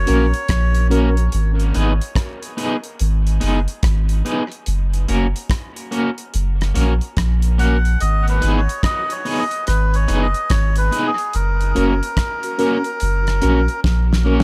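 Dub reggae at 72 BPM in G# minor, meditative and spacious, with a swung 16th feel and a small-room ambience. A deep, round sub bass sits up front under a damped 70s kit with a fat snare and tight kick, while a twangy, slightly broken-up guitar with tremolo and dub echo runs throughout, and a mellow, reedy electric piano with fast tremolo adds stabs at the start and again from 11.8 seconds. A breathy, nasal melodica with dub echo carries the melody, mostly from 7.6 to 13.8 seconds, before a drum fill closes this cut from a longer piece.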